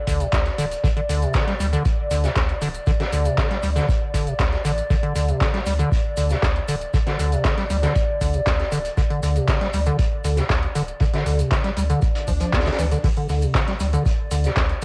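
Acid house at 118 BPM, gritty and driving, this excerpt is built on a squelchy, resonant square-wave acid bass riff with lush chorus and analog delay, sitting up front over a round sine sub bass that pumps with the sidechain, while a warbling, detuned pad holds nostalgic chords through chorus, phaser and its own reverb. A deep, tape-warm electronic kick leads the drums, joined by an analog drum machine's metallic hats, handclaps and crash, a raw garage kit with a high-tuned snare and rolled-off top, and grainy maracas in the background. An electronic swell sounds in the background from 12.2 to 13.0 seconds, all within a light, lo-fi home-cassette ambience.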